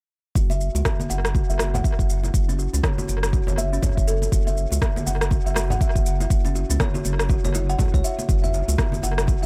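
Afro house at 121 BPM with a swung sixteenth-note feel, this short excerpt carries a warm, earthy mood over a sustained F#7 harmony. A woody, plucked kalimba with a boxy small-room character plays short thumbnail arpeggios from C#4 to F#5, shaped by a filter sweep, low-pass filtering, analog delay and sidechain pumping. Beneath it, a round, dark analog bass with a fast attack sits up front between F#1 and C#2, also pumping against an overdriven, deep electronic kick. Layered electronic shaker and rim clicks add grit through overdrive and tape echo, while bright, low-tuned congas played with soft hands sit in the background. Near the end, at 8.4 seconds, a very quiet, distant djembe with metal rattles joins the echo-heavy mix.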